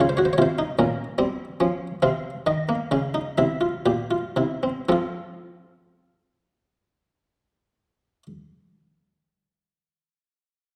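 Classical, baroque-style three-part fugue in 6/8, a driving yet solemn excerpt cut from a longer piece, voiced entirely on a solo buff-stop harpsichord that sounds plucked, muted and lute-like in an Italian manner. The instrument sits dry and up front within a moderate recital-hall reverb, and the pace slows over the first 4.9 seconds as the harmony moves through a darkened minor chord and a suspended dominant before settling onto F. A new section begins there and runs to 8.1 seconds, with the tuning set slightly below modern pitch at A4 = 437 Hz.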